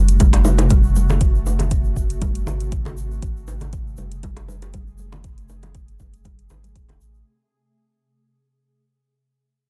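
A driving 4/4 afro house groove at 119 BPM with a light swing on the sixteenths pairs a deep, up-front electronic kick and metallic, tape-warm hi-hats with ringing close congas, tight high-tuned bongos and a grainy tube shaker, while a round, dark analog bass pumps under an ethereal, airy pad of detuned sustained chords washed in chorus, phaser and reverb, giving a spiritual lift to this short fading excerpt.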